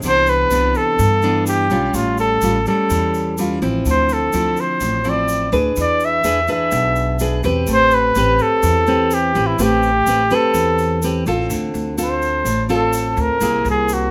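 A clear, close-miked flugelhorn carries the melody up front in this intimate, melancholic bossa nova excerpt, its jazz-style phrasing marked by scooped notes before it opens into a solo at 11.5 seconds. A bright, full-bodied nylon-string guitar, fingerpicked with audible finger squeak, shares the foreground, while a woody, growly pizzicato upright bass anchors the low end and a grainy egg shaker sounds distant, as if from a large room. Light reverb lends a gentle sense of space.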